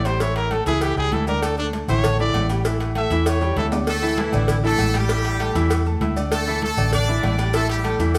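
Salsa at a danceable, passionate 196 BPM in straight 4/4, this brief excerpt from a longer piece moves from an A7 chord to an A5. A forceful solo trumpet with light vibrato and a smooth top leads up front until 3.7 seconds, and a short drum fill closes its phrase. At 3.9 seconds a brilliant, punchy horn section takes over the melody, playing as an ensemble in octave doubling. Underneath, a dark, round, foam-muted fingered electric bass sits up front, while a clear, natural grand piano supplies accompaniment. Congas with a bright, thin skin, a tight, high-tuned cowbell struck with hard hands, ringing metal-shell agogo bells and timbales, and grainy maracas fill the background, close and dry. The band plays live in one large studio room with a wet reverb.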